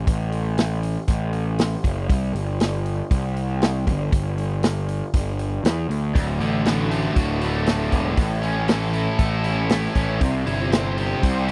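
Classic rock with a swaggering, confident stance, this short cut from a longer piece moves at 118 BPM in a straight 4/4 in D major. A fuzzy, overdriven picked electric bass opens alone at 0.0 s, sitting up front alongside a vintage acoustic drum kit whose punchy kick, medium-tuned snare and hi-hat arrive at 0.1 s with a small-room, rolled-off character. The opening bars pass over power chords on C and G before the harmony settles onto D, A and C. At 6.1 s a bright, distorted electric guitar and a very quiet tonewheel organ come in, the organ holding sustained chords through a slow rotary speaker with a lightly overdriven, full tone, and a cranked stack guitar joins at 6.2 s with its own overdriven, picked riff. The sound is dry and close, in the manner of a 1970s studio session, with bass and drums leading the mix and the guitars stacked just behind.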